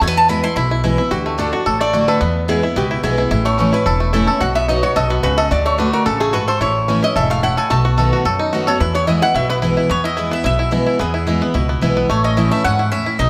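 Bluegrass with a rustic, driving swing, cut from a longer piece, built on a thumpy, dark pizzicato upright bass, a full-bodied dreadnought guitar with fresh strings and a twangy, percussive banjo playing arpeggios, the guitar and banjo sitting up front. A woody, double-strung mandolin opens with a brief picked solo, then the lap resonator guitar takes over from 1.1 seconds with a metallic, nasal slide solo played with a steel bar and fingerpicks. The mandolin returns at 9.9 seconds to carry the melody again. The ensemble sits in a moderate, large studio reverb.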